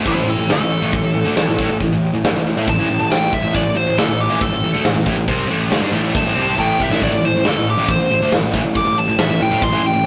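A nasal, overdriven lead guitar with a parked wah solos from 0.1 seconds over a double-tracked overdriven rhythm guitar riff, a growly fuzz bass in the background and a punchy, up-front rock drum kit with a fill at 6.6 seconds, giving this heavy, menacing hard rock excerpt on A minor a rough rehearsal-room sound with tube saturation and moderate reverb.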